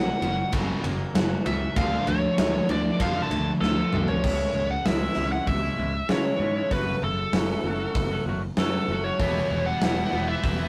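A straight 4/4 pulse at 97 BPM drives this restless, anthemic quiet-loud alternative rock excerpt, where a biting, overdriven lead guitar solos up front over clean, twangy arpeggios in the background, while a very quiet fuzz guitar and a scooped high-gain guitar riff until a drum fill from 3.6 s leads into a new section at 4.2 s, the high-gain guitar returning at 9.2 s, beneath which a growly, punchy picked bass and a big, dark acoustic kit with a fat snare sit in light reverb and rough rehearsal-room saturation.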